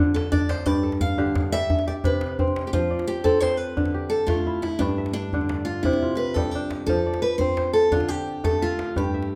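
West African traditional music with a flowing, warm mood at 116 BPM in a straight 12/8 in F lydian, this clip from a longer piece sets crisp, ringing kora arpeggios alongside a woody, boxy old ladder-braced acoustic guitar that carries the picked melody and takes a solo in the first 2.7 seconds, while a medium-tuned djembe played with hard hands keeps the pulse, all in a moderate recital-hall reverb.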